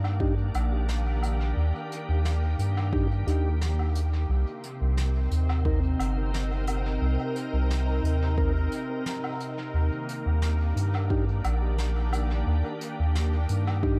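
Spacious and hazy, this ambient dub excerpt moves at 88 BPM with a light swing, its chords drifting from Ebmaj7 to Cm7 and back over a round, deep sub bass that sits up front and a punchy, layered electronic kick. A calm, warbling organ-like pad with ensemble chorus and reverb holds sustained chords, while a mellow, flute-like tonewheel organ adds soft stabs through a slow rotary speaker and dub echo in the background. Brushed jazz drums with a high-tuned snare, hi-hat and woodblock carry their own dub echo, and from 4.3 seconds a bubbling, resonant stepped-filter texture glints on a single Bb4 in the distance.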